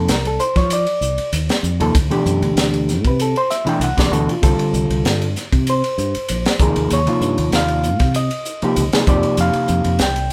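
A short, polished slice of electric jazz fusion, captured with a band playing live in one room and a moderate studio reverb around it. At 97 BPM in 4/4 with a light sixteenth-note swing, the mood is funky and slick. An overdriven reed electric piano sits up front, its reedy, gritty tone pushed through a combo amp as it comps through suspended chords from F7sus4 to D13sus4, Csus4, Eb13sus4 and back to F13sus4. Underneath, a fretless electric bass adds a warm, direct and amped low end, spanning Bb1 to F3. The acoustic drum kit enters at 0.1 seconds, airy and up front, with a punchy kick, a high-tuned snare, hi-hat and dark ride cymbal.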